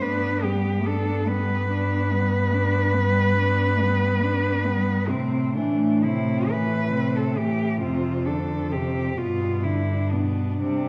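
In a rubato 12/8, moving at roughly 39-49 beats per minute counted in dotted quarters, this serene, tender classical passage for cello ensemble unfolds slowly, cut from a longer piece. Four bowed, muted cellos, each a single player playing con sordino, sound throughout its 10.9 seconds. The melody cello sits up front, singing between C4 and B4 with a dark, veiled tone, vibrato and a smooth top. Beneath it, a second line and an inner accompaniment share that shaded sordino colour, while the bass cello, spanning F2 to C3, adds light vibrato, soft attacks and portamento. The harmony rests on G, moves to A minor at 5.1 seconds and Dm7 over F at 7.8 seconds, then settles back on G at 9.2 seconds. A recital-hall reverb with a 1.5-second decay wraps the ensemble in a gentle, resonant halo.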